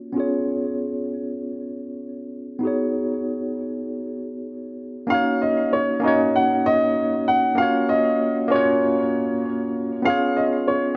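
Relaxed and warm, this chillout fragment at 97 BPM with a lightly swung sixteenth feel opens with a clean, barky tine electric piano heard up front through its built-in speakers, laying down chords from C#7 through B69, D#m7 and F#maj7, while a dark, mellow baby grand with a boxy tone and short sustain joins at 5.1 seconds to carry a high, delayed melody, with both parts sitting in a lush hall reverb and a soft, rounded top end.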